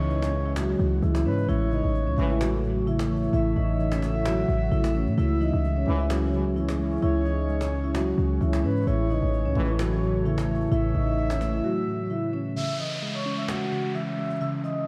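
A half-time trap pulse at 130 BPM in 4/4 drives this dark, hard-hitting hip hop passage in C# minor, carried by a punchy, heavy 808-style bass up front and a snappy, vintage cajon with snares, with a ringing, metallic vibraphone melody over muted, felt-like synth keys and a deep, moody ambient pad. A breathy, flute-like synth lead adds a second line, while tight, clear brass ensemble stabs with delay punctuate the groove, the first arriving at 2.2 s. The bass drops out at 11.6 s for a break, and an electronic downlifter closes the piece from 12.6 s, all set in a dreamy mix soaked in lush hall reverb.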